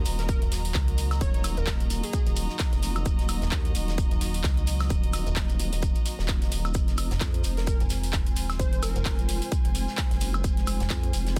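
Bass house with a bouncy, swaggering strut, cut from a longer piece and driven by a swung groove in 4/4 that moves from Ebm to Fm at 6.7 seconds. A punchy, tape-warm electronic kick sits up front beside a metallic FM bass with overdrive and sidechain pumping, while a nasal, resonant vowel-sweep wobble bass runs underneath from the very start, treated with chorus and overdrive. The big-room dance kit adds handclaps, metallic hi-hats and woodblock, filled out by a very quiet shaker and snare and a grainy shekere in the background. A deep, moody sawtooth pad and a smooth, bowed chamber string section hold the harmony behind, both pumping with sidechain compression. An airy, dreamy lead with vibrato and portamento floats in briefly at 0.2 and again at 7.6 seconds, colored by chorus, cassette tape wear and dub echo. The mix is dense and heavily limited, with studio reverb around it.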